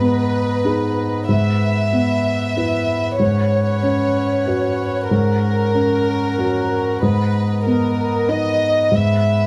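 Neoclassical piano and strings in G# minor at a rubato 94 BPM in 3/4, this reflective, fragile excerpt sets a close, bowed chamber violin section playing a sul tasto melody with light vibrato and soft attacks over a felt-muted upright piano accompaniment, mellow and intimate with audible action noise, and the reedy, breathing sustained chords of a vintage hand-pumped harmonium, all in a dark production with light reverb as the harmony circles from G#madd9 through E/G#, Bsus2/G# and F#add9/G# over a G# bass across the 9.5 seconds.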